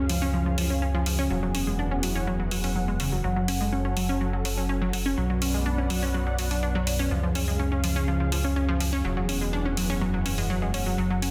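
Melodic techno at 124 BPM in 4/4, driving and hypnotic, cut from a longer piece with the tuning set to A4 = 436 Hz. A punchy, bright unison pluck carries the arpeggios through dub echo over a round, deep analog bass, while a thick, airy pad holds sustained chords through chorus and phaser, an evolving, warbling analog drone hums very quietly in the mix, and an electronic hi-hat enters at 0.1 seconds. The chords move from C# through Eadd9, F#m and Bm in a moderate digital room reverb, and the master is dense and heavily limited.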